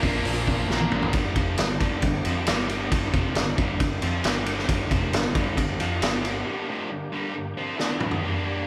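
A swaggering, brooding classic rock passage in G minor opens at 135 BPM in a straight 4/4, with the full band already playing together in one room. The first bar sits on a Bb chord, where a bright, compressed distorted guitar riff in the background and a drum fill carry things into the Gm groove at 1.1 seconds. Throughout, a picked, double-tracked overdriven guitar riff stands up front, while a growly fuzz bass with overdrive holds the low end until 6.4 seconds. The vintage drum kit is gritty and saturated, with dark cymbals, a punchy kick and a medium-tuned snare. Beneath it all a very quiet, thick tonewheel organ holds sustained chords through a slow rotary speaker. A break begins at 6.5 seconds and closes with another drum fill on a D5 chord, all bathed in a moderate large studio reverb, in what is cut from a longer piece.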